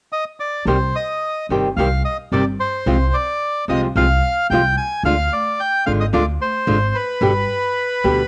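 A reedy, close-miked bandoneon carries the melody from 0.1 seconds, dry, full and up front with a cassette-tape tint, in this passionate, dramatic tango excerpt in C harmonic minor at 110 BPM in 4/4 with a rubato feel. At 0.7 seconds a small, fingerpicked nylon-string guitar and a woody pizzicato upright bass with steel strings join, moving through Cm, Fm/C, Ddim and G. The excerpt has the feel of a home cassette recording in a small room with light reverb.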